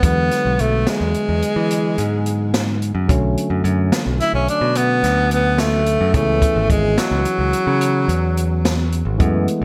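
Brooding and driving, this progressive instrumental excerpt in 11/8 at 216 BPM (eighths) sets a clear, vibrato-laden tenor saxophone melody with delay up front, where it sings until 8.9 s, over a bright picked electric bass, an open jazz drum kit with a boomy kick and gated reverb, and a barky, lightly overdriven tine electric piano in the background, moving through E7, Bm7 and C#m7 inside a bright 1980s-style digital production with plate reverb.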